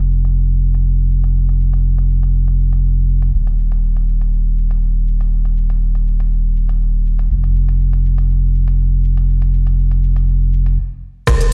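A round, sine-toned sub bass and a crisp, up-front afro-pop kit of crash, hi-hat, rim click and shaker open this driving, warm afro house excerpt at 121 BPM, with a light swing on the 4/4 groove. The mellow bass pumps under sidechain between Eb1 and F1, while low-pass filters soften the hats, percussion, snare and cymbals, all set in the echoing ambience of a bare stone room heard through a big sound system. A stop arrives from 10.8 to 11.3 seconds, and a deep electronic kick hits at 11.3 seconds just before the cut.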